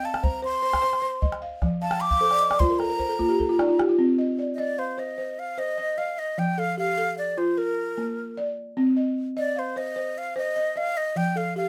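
This West African traditional piece in 12/8 is reflective and flowing, heard in a cut from a longer work. A breathy, mellow silver concert flute carries the melody with vibrato, a crisp attack and an unsteady quality, featured as a solo through the opening 4.0 seconds. Beneath it, a woody, buzzing balafon played with soft rubber mallets spins dry arpeggios and adds a fill from 1.8 seconds, while a deep, saturated calabash sits up front until 4.0 seconds, ending its part with a drum fill, all within a moderate small-room reverb.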